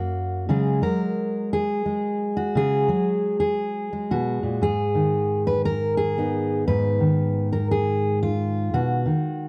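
A dark, full-bodied jumbo steel-string acoustic guitar sits up front, fingerpicked alone through this haunting, reflective folk excerpt at 116 BPM in 4/4 with a lightly swung eighth-note feel, tuned slightly below standard pitch to A4 = 436 Hz. The harmony moves from Dbsus4 to Abm and then to B, ranging from Gb2 up to Cb5 across the 9.5-second fragment. The dry, close sound recalls a 1970s studio recording.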